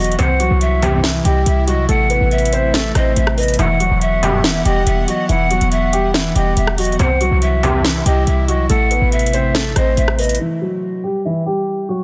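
Brooding and hard-hitting, this trap excerpt in half-time sets a dark, mellow grand piano melody over a punchy 808 bass, overdriven drums with a sharp snare and metallic hats, breathy cane pan pipes with delay, an airy chorused pad in the background and edgy, nasal sync-sweep polysynth stabs, before everything drops out at 10.4 s, leaving the piano alone under a filter sweep until 12.0 s.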